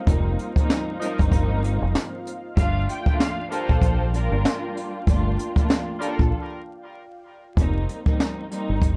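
A swung 96 BPM boom-bap groove in 4/4 sets the pace, with a brushed jazz kit of punchy kick, high-tuned snare and hi-hat sitting up front beside a round, dark fingered electric bass. This short cut from a longer hip hop piece is in G minor and feels reflective and gritty, with vinyl crackle over a dry, close sound. A woody, lush string section carries the accompaniment beneath a soft, detuned sawtooth pad that holds mellow chords in the background until 7.5 seconds. A clear, punchy horn section adds stabs treated with delay, and a distant, expressive violin section briefly takes the melody from 2.6 seconds, also touched by delay. After a break at 6.3 seconds, the harmony returns to F7sus4 as a new section begins.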